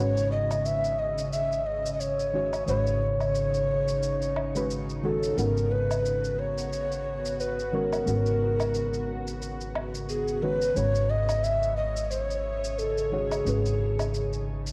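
A breathy, hollow cedar flute opens this mystical organic downtempo excerpt in G# minor, carrying the melody up front from the very start. Beneath it, a soft, dark chord stab with a fast attack and short decay, a tense, string-like bowed drone that swells in slowly and shifts under a filter sweep, and a woody, growly pizzicato upright bass holding a low G# all sound from 0.0 seconds, resting on a single G#m11 chord. A produced, overdriven layer of electronic shaker and woodblock joins at 0.2 seconds and sits quietly in the background, moving at 89 BPM in 4/4 with a light swing on the sixteenths. The close-miked flute has a tongued chiff and straight tone, and the bright, detuned drone carries vibrato and a noise layer, both bathed in shimmer reverb. Analog delay trails the flute and chord stab, while cassette tape coloring and a moderate spring-reverb space give the whole home-recorded track a hazy, intimate character.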